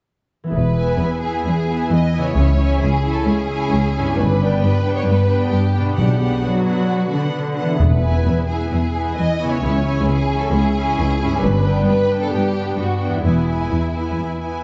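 The up-front cello section anchors this adventurous, soaring cinematic passage in E major at 132 BPM, its lush vibrato bass joined by a rich, focused double bass section, smooth violas, two expressive violin lines with soft attacks, ringing fingerpicked harp arpeggios in the background, and hard-mallet timpani from 6.0 to 8.4 seconds, all set in a dark concert hall sound.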